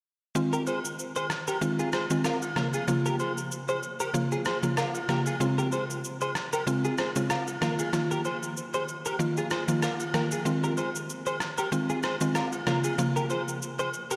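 Drenched in a long church-like reverb, this dreamy, sultry afrobeats excerpt rolls along at 95 BPM in 4/4 with a gentle 16th-note swing, tuned slightly flat to A4 = 437 Hz. A woody, round FM synth pluck with a bright noise layer and chorus sits up front from 0.3 seconds, laying down Fm7, Dbmaj7 and Ebsus2 chords. A gritty, compressed electronic shaker and rim click add a sampler-style pulse, while a twangy, clean direct-recorded electric guitar riff shimmers through analog chorus and tape echo, and distant agogo bells and woodblock ring out as if from a large room.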